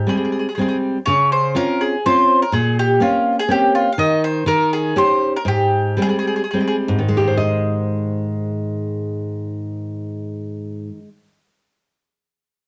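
Romantic and lively, this short cut from a longer Italian folk piece in three-four time sets a picked mandolin with round double strings over a bright, full-bodied fingerpicked nylon-string guitar, both up front and carrying the character of cassette tape in a small room. The mandolin carries the melody until 6.8 seconds, while the guitar's deep classical accompaniment, with audible finger squeak, moves through lush seventh chords as the music slows from 4.0 seconds. The guitar then continues alone to close at 11.4 seconds.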